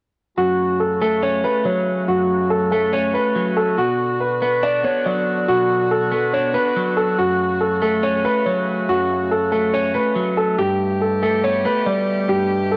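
From 0.4 seconds a dark concert grand piano carries the melody up front, its deep bass tinted by a low-pass filter and tape echo, over a clean, picked electric guitar washed in lush chorus and a distant, roomy woodwind section holding mellow sustained chords with light vibrato, shaping a dark, tense half-time hip hop groove at 141 BPM in F# phrygian, moving from F#m through Bm to Gadd9 with light reverb and the grit of a dry cassette recording.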